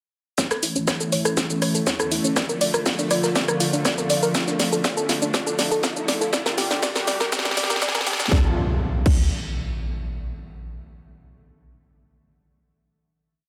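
A dark, hypnotic melodic techno piece at 121 BPM in D harmonic minor opens at 0.4 s with a punchy, overdriven four-on-the-floor electronic kick and an up-front house kit of shaker, rim, open hat, cracking snare and crash, beneath which sit a very quiet warm soul drum kit playing a looped breakbeat, a deep round analog bass in a dotted rhythm, a soft pluck arpeggio looping six steps against the bar through chorus and dub echo, and a lush detuned pad pumping with the sidechain over A, Bb, Dm and Gm. A tense, string-like drone with vibrato enters at 0.8 s, and a background riser and impact arrives at 3.1 s, while a drum fill and filter sweeps on the pad and arpeggio drive the build toward a final D minor chord, set in light digital ambience.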